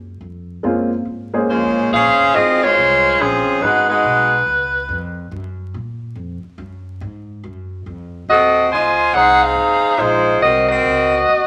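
A bright saxophone section carries the melody up front in this swinging, brassy big band swing fragment in Bb minor, its vibrato-laden ensemble sound entering at 1.5 seconds and returning at 8.3 seconds after a pause. The tempo sits at 141 BPM in 4/4 with a swing feel on the eighth notes. Beneath it, a woody, growly upright bass plucks pizzicato lines on steel strings from the very start, sitting low in the mix. A warm, slightly detuned upright piano adds a brief, intimate accompaniment early on, its action noise audible and its tone natural and close. The harmony moves through rich jazz chords such as Bbm9, Gbmaj7 and Dbmaj9, and the whole is bathed in a wet large-studio reverb with a layer of vinyl crackle, cut from a longer piece.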